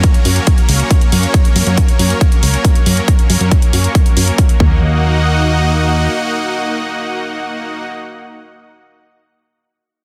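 Driving a straight 4/4 pulse at 138 BPM, this short uplifting trance excerpt opens with a punchy, overdriven electronic kick sitting up front, alongside a layered hi-hat that shares the same grit and studio reverb. A plucky analog bass with a fast-attack filter pluck and funky, decaying sawtooth-and-square tone pumps with sidechain, moving between Db2 and Gb2. Above it, a lush supersaw pad of detuned unison saws with a sub octave holds sustained chords from Gb3 to Gb5, its slow attack and long release giving a bright, soaring sheen that also breathes with sidechain pumping. The harmony sits on Gb before turning to Ebm at 4.6 seconds, just as the drums drop out around 4.7 seconds and the bass follows at 6.1 seconds, leaving the pad to ring on alone until 7.8 seconds. Light reverb and a digital ambience frame a dense, heavily limited modern master, keeping the euphoric mood in the key of Eb minor.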